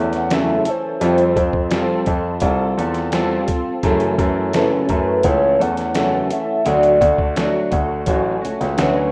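A rough home-demo mix with light reverb and digital ambience frames this dreamy, nostalgic indie and bedroom pop fragment, where a hollow, woody clarinet-like synth lead carries the melody through phaser, subtle chorus and tape echo, a bright, twangy clean electric guitar with ensemble chorus and vibrato provides accompaniment up front, a warm grand piano holds down the bass, and a pitched-down, gritty trip hop sampler-style kit of thumpy kick, snare and hi-hat sits further back over chords moving from F#m7 through Fadd9, back to F#m7 and on to Dmaj7.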